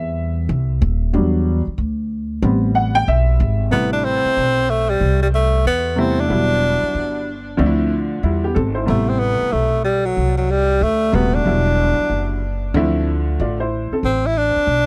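Over a swung sixteenth-note groove in four, this smoky, cool jazz-hop excerpt opens with a worn, slightly detuned upright piano voicing minor ninth chords, while a thumpy, gut-strung pizzicato upright bass sits up front. At 3.7 seconds a close-miked tenor saxophone takes the solo melody, with light vibrato, scooped notes and a touch of tape echo. The piano drops out at 14.0 seconds, leaving bass and sax to close on a final added-ninth minor chord, all captured in a dry, intimate 1970s-style studio sound.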